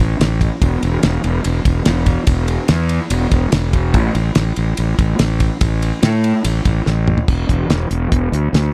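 Classic rock with a confident, driving straight feel, this short excerpt pairs an overdriven, punchy fuzz fingered electric bass, up front from the start, with a damped, dry 70s acoustic drum kit of fat snare, tight kick, hi-hat, ride, crash and toms, entering at 0.2 seconds, its fill at 6.9 seconds leading into a new section at 7.3 seconds, all captured in a close, dry 1970s-style studio sound.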